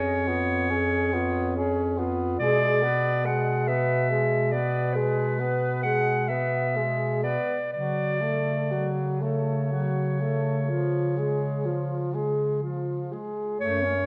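A clear, up-front clarinet sings the melody in this melancholic, solemn classical excerpt for single-reed quartet, moving in a rubato 12/8 at about 39-48 BPM over a distant alto saxophone second line with vibrato, a punchy, vintage-toned tenor saxophone accompaniment, and a dark, roomy bass clarinet, all in a recital hall with a 1.8-second reverb as the harmony passes from C#7/E# through G#dim/B and F#m/C# to C#.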